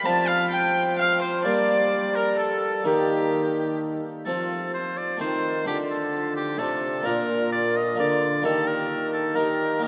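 A long, wet cathedral reverb surrounds this short cut from a longer classical piece, a stately, courtly consort dance in Renaissance style. It moves at 129 BPM in a straight 3/4, set in F mixolydian with tuning at A4 = 442 Hz. A clear solo oboe with light vibrato carries the melody up front in classical style. Alongside it, a single close viola, bowed in period style, sings a second line with a warm, nasal, reedy gut-string tone and an airy bow. A full Flemish-style harpsichord with two sets of strings plucks the accompaniment, and a mellow solo bassoon with a smooth top holds the bass from 0.1 seconds. The harmony moves through F, G minor and E-flat, then a second section from 4.3 seconds turns from F through D minor and B-flat to E-flat.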